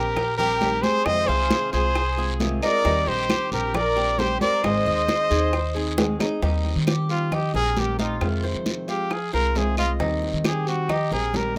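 A straight 4/4 Cuban son and guajira groove at 134 BPM in Eb major drives this sunny, relaxed Latin clip from a longer piece. A clear trumpet with light vibrato leads up front over a dark, thumpy pizzicato upright bass, a bright fingerpicked nylon-string guitar and mellow, metallic tres arpeggios on double strings. Soft-handed congas, round low-tuned bongos and woody claves sit in the background, and a raspy guiro sounds close, while a reedy, bowed violin section adds a smooth second line until 6.0 s. A drum fill then leads into a trumpet solo at 6.4 s, all in a rough home demo mix with light reverb.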